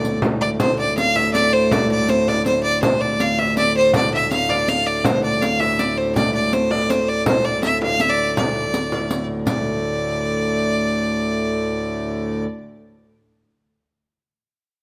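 Driving in 3/4 at 162 BPM with a straight feel, this ancient-sounding medieval dance in D minor, cut from a longer piece, sets a single biting, intense bowed fiddle with light vibrato up front over a reedy, nasal, breathing hand-pumped harmonium drone, while a small, bright frame drum played with hard hands and a riq's jingles in the background stop at 9.6 s, leaving fiddle and harmonium to carry on until about 12.5 s in moderate recital hall reverb captured by close, detailed microphones.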